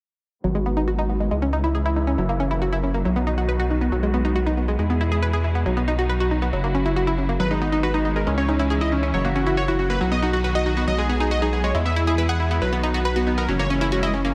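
A driving, euphoric trance passage in G# minor at 138 BPM opens with a clear, lush symphonic string section holding filter-swept chords, a round analog pluck spinning filter-swept arpeggios through chorus and digital delay, and a gritty, saturated synth bass pushing up front. At 7.4 seconds a punchy, airy supersaw stab melody with 12-bit sampler grit and delay joins the mix, and a faint electronic swell enters in the background at 13.8 seconds, all within light reverb.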